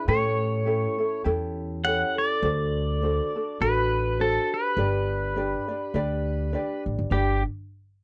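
A dry, close recording in a 1970s studio style with light reverb frames this dreamy, relaxed Hawaiian excerpt, which moves with a gentle swing through A7, D7 and G. Up front, a bright, twangy electric pedal steel guitar carries the melody with fingerpicks, slide and volume swells, while a woody, dark pizzicato upright bass enters at 0.1 s. In the background, a vibraphone with soft mallets plays a mellow, ringing second line with slow motor vibrato. A thumb-plucked acoustic ukulele adds light, warm accompaniment.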